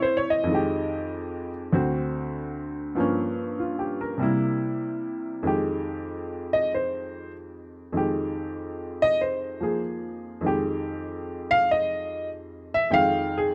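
A clear, woody upright piano opens this short, moody solo jazz excerpt in F minor, swinging its eighth notes at 96 BPM in 4/4. In the opening stretch it moves through Fm9, D7, Gm7b5 and C7 before returning to Fm9 at 5.5 seconds. From there the piano takes a solo that runs to the close at 13.5 seconds; across the excerpt it ranges from D2 up to G5. The instrument sounds natural and slightly detuned, with a short sustain, and sits up front. Close, detailed microphones and a light reverb capture the performance.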